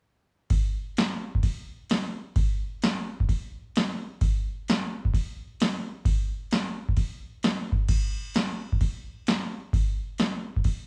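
This rock excerpt at 130 BPM in 4/4 has a heavy, gritty mood, driven by an analog electronic drum machine playing swung eighths from 0.5 to 10.8 seconds. The machine sits up front, with a deep kick, punchy snare, metallic hi-hats and crash cymbal, and it was re-recorded in a large room, in a live one-room recording under light reverb. The opening section gives way to a new section at 7.9 seconds before the clip cuts off.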